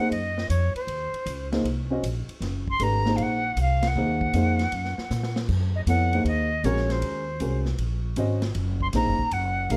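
Swinging in 4/4, this short, spiritual and hypnotic modal jazz fragment sets a pure, tongued silver concert flute, singing with vibrato, over a mellow, natural upright piano on a single Ebm6 chord, a woody pizzicato upright bass up front, and a big-band drum kit with punchy kick, snare, hi-hat, ride and crash, as the band hits an accent at 3.8 seconds and the drums play a fill from 5.1 to 5.5 seconds, in light reverb and a dark production.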